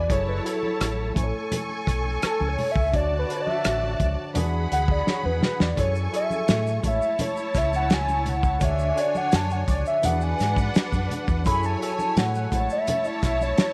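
Smooth and bittersweet, this 84 BPM excerpt of lush 1970s-style soul features a hollow, nasal square lead with chorus carrying an analog synth solo over a bowed string section, a worn, lightly overdriven tine electric piano, a round, punchy dub bass, a gritty, up-front soul drum kit with a fill at 5.1 seconds, ringing congas, and a grainy tube shaker entering at 5.8 seconds, all cycling through F#m9, Amaj7, Dmaj7 and E9 in a moderate echo chamber.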